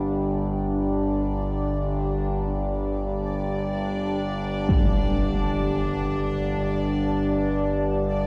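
Dark ambient drone in free time, desolate and cavernous, this short passage sets an up-front, resonant sawtooth-and-sine drone with moving overtones under a moody, detuned analog pad with chorus and phaser, a bright bubbling texture of random filter steps, and a huge low-pass-filtered impact at 4.7 seconds, all steeped in a cathedral reverb.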